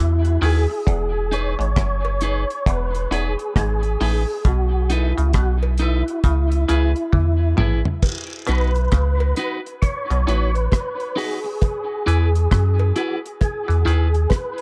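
Roots reggae at a relaxed 67 BPM in E major, this excerpt has a laid-back, warm mood, with a swung sixteenth-note feel and an echo-heavy studio sound. A soft, round dub sub bass sits up front with deep, sustained tones, while a dry, dark drum kit with a tight kick and rolled-off top plays crash, hi-hat, rim click and toms. A mellow tonewheel organ carries the melody, its percussive attack and key click coloured by chorus vibrato, a fast rotary speaker and dub echo. A muted, twangy clav played through an overdriven combo amp holds down a nasal riff low in the register, and an electric guitar at the edge of break-up adds compressed, picked accompaniment with its own dub echo. From 2.0 seconds a small-room percussion part of cowbell, jawbone-type rattle, tube shaker and group handclap joins, and a drum fill from 7.1 seconds leads into a new section at 8.0 seconds as the chords move from C#m7, Emaj7 and B7 toward B and E.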